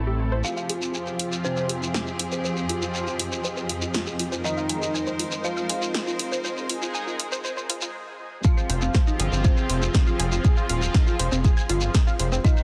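A dense, heavily limited modern mix with light reverb carries this dark, hypnotic slice of melodic techno in F minor at 120 BPM, where the strings and synths breathe with sidechain pumping. A lush studio string section holds sustained chords while a brassy, warbling analog pad stabs through chorus and tape echo. Tucked in the background, a blurred granular cloud pad shimmers in its own reverb, as does a swarming, tense drone, and a tight sequenced synth drives sawtooth arpeggios that, along with the pad, open up under filter sweeps through the build-up over Fm7 and Ab. A fat, mellow analog lead with phaser and vibrato sings the melody beneath an eerie, inharmonic detuned synth bell, while a grainy, close shekere and a punchy analog drum machine on hi-hat and snare keep time. After a brief break at 7.9 seconds, the drop lands at 8.4 seconds with a layered, up-front electronic kick, and at 8.7 seconds a gritty, nasal synth bass roars back in with tube saturation.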